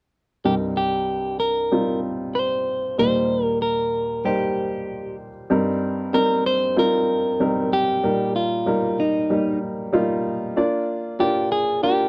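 This pop fragment has a warm, anthemic mood, moving at an easy pace in a straight four. An upright piano enters at 0.4 s to carry the accompaniment, its woody tone and short sustain sitting up front across a broad range. A clean electric guitar joins at 0.5 s with the melody, picked and twangy, also placed close in the mix and staying in a narrow upper-middle register. The harmony moves from Cm7 to Eb, returns to Cm7 for a second passage at 5.5 s, and reaches Bb at 10.6 s before the fragment breaks off. The sound is dry and intimate, like a 1970s studio session, with only a light touch of reverb.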